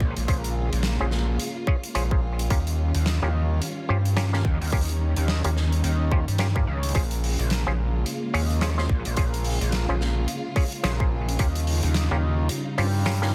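Funky and swaggering, this glitch hop excerpt moves at 108 BPM in 4/4 with a swung sixteenth-note feel, sitting in Bb dorian as the harmony shifts between Bbm7 and Eb9. A gritty, saturated synth bass with overdrive drives the low end up front, its sawtooth and wave-folded tone carrying a resonant filter pluck. An electronic kick, tight and layered, punches from the start until 11.5 seconds, while a big rock drum kit enters at 0.2 seconds with hi-hat and a medium-tuned snare that sounds roomy and rolled-off. Twangy, overdriven auto-wah clav stabs arrive at 0.3 seconds, bright and stringy through a combo amp, with delay and sidechain pumping. Beneath them, a lush bowed string section holds sustained chords with vibrato and a soft attack, pumping against the sidechain, all framed by light reverb in a dense, heavily limited modern master.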